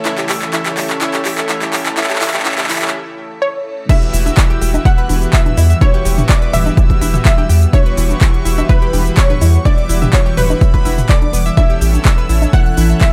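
Driving and dreamy, this progressive house excerpt from a longer piece moves at 125 BPM in 4/4 with a straight feel in E dorian. It opens with a build-up: an evolving wavetable pad sits in the background with ensemble chorus, phaser and built-in reverb under a filter sweep, while a soft supersaw plays smooth stabs through delay and an analog pluck runs round, bright arpeggios with chorus. A big-room dance drum kit brings a fill of crisp hats, handclaps, shaker and crash, and a deep, saturated sub bass sits up front, all pumping against the sidechain before a short break. A lush unison pluck melody enters at 3.4 seconds, trailed by dub echo, and at 3.9 seconds the drop arrives with a punchy electronic kick up front. A high second supersaw line floats in the background, and tape-warm electronic congas, bongos and toms are tucked behind. The harmony moves from A to Emadd9 at the drop and returns to A near the close, all held together by a light reverb.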